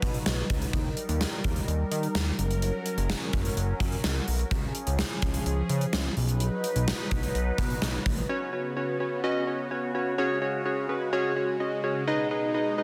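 A dense, heavily limited modern mix set in a lush hall reverb with a touch of small-room ambience carries this upbeat, nostalgic synth-pop fragment in straight 4/4. A swirling, ring-modulated analog pad with phaser and chorus sustains chords throughout, while a fat, detuned sawtooth bass plays until 8.2 s and a gated 80s kit with a punchy kick, medium-tuned snare and hi-hat in a bright stone room sits up front until 8.3 s. From 8.3 s, round, mellow, chorused square-and-sawtooth keys enter as accompaniment, moving through suspended chords toward a minor close.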